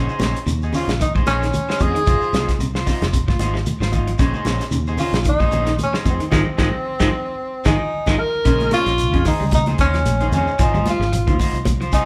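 Hypnotic and defiant, this afrobeat groove at 113 BPM in Bb minor sways on a light sixteenth-note swing, cycling between Bbm11 and Ab6 as a dark, clean electric guitar picks arpeggios and a twangy, slightly broken-up second guitar adds spring-reverbed stabs over a round, punchy fingered bass. A dry, damped 70s drum kit with a tight kick anchors grainy shekere and soft-handed, high-tuned congas in the background, while a mellow tenor saxophone with vibrato and a distant, roomy tone takes the jazz-style solo up front from 0.8 s. The band hits an accent from 6.3 s, capped by a drum fill, and a delicate, bell-like celesta enters at 7.7 s in this live-in-one-room excerpt cut from a longer piece.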